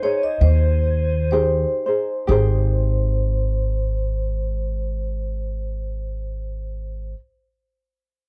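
A dark, moderately roomy studio sound frames this languid, relaxed Hawaiian fragment, which swings gently in four and slows down over its opening 2.3 seconds. A clean, compressed electric pedal steel guitar, played with fingerpicks, slide and volume swells and bathed in plate reverb, carries the melody only until 1.3 seconds, while a metallic, ringing vibraphone with medium mallets and motor vibrato adds a second line. A light, thumb-plucked acoustic ukulele supplies warm accompaniment, and from 0.4 seconds a woody, thumpy upright bass on gut strings sits up front under the music's shift into a new passage at 2.3 seconds.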